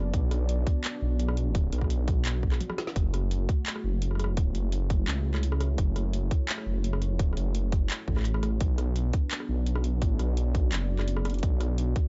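A dark analog pad and a deep, rumbling detuned saw bass open this half-time drum and bass excerpt together. The pad holds moody sustained chords with a slow attack and long release, its detuned sawtooth and triangle tones thickened by a sub octave and chorus and pumped by sidechain, while the bass sits up front with a beating, fast-attack sawtooth and sine tone. At 170 BPM in 4/4 with a half-time feel, a tight, layered electronic kick lands up front alongside an electronic kit of woody snare, metallic hats, handclaps, rim clicks and toms, both re-recorded in a small room. A short break with a drum fill at 2.6 to 3.0 seconds leads from B minor into F# minor 7, which returns to B minor at 8.6 seconds. Tuned to A4 = 436 Hz in F# minor, the mix is dry and gritty, with a dull top end that makes the heavy, cinematic mood feel close.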